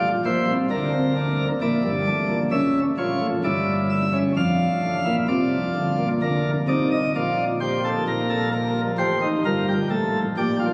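Stately and elegant, this brief cut from a longer baroque-style three-part fugue moves at 65 BPM in a straight 4/4, with a chamber organ playing solo on a full principal chorus whose chiff and chamber voicing sit up front across a range from F1 to F5. Its harmony opens on D minor and passes through A7 before settling into B-flat major at 6.2 seconds, where the second section begins. The sound carries a long, wet cathedral reverb with a lingering tail, captured on a phone in the room along with a club-style reverb.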